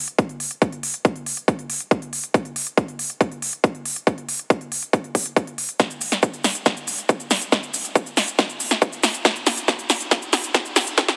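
Soaring and euphoric, this short uplifting trance passage, cut from a longer piece, drives forward at 139 BPM in a straight 4/4. It is built entirely from drums: a big-room dance drum kit carrying hi-hat, shaker and snare enters at 0.1 seconds, joined at 0.2 seconds by a punchy, overdriven electronic kick that sits up front. The kit is layered and produced, with a punchy snare and crisp hats, its overdrive giving it grit, while a small room reverb places both drum parts in a close space. The whole stretch is a build-up, and from 5.8 seconds a drum fill pushes forward, running to the end at 11.2 seconds. A light digital ambience surrounds the mix, filtered to keep the low end clean.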